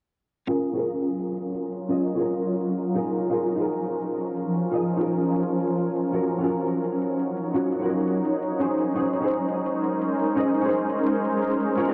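A very quiet electronic hi-hat ticks out a swung 170 BPM pulse in 4/4 from 0.5 s, its metallic, layered tone faintly roomy beneath this dreamy, soulful stretch of liquid drum and bass, cut from a longer piece. Over it, a clean, dark archtop guitar sits up front, picking hollow-body accompaniment through ensemble chorus, tape echo and a low-pass filter across Gbmaj7, Db6/F, Ebm7 and Bbm11. From 1.1 s a shimmering ambient pad holds sustained chords beside it, ethereal and bright, with an octave-up shimmer, detuned unison sine tones, a slow attack and granular texture bathed in chorus and built-in reverb. Filter sweeps run over both the guitar and the pad throughout, and the whole mix is soaked in a huge, lingering reverb. Only at 11.8 s does a crunchy breakbeat kit appear, its high-tuned snare and hats saturated, gritty and rolled-off before the clip ends.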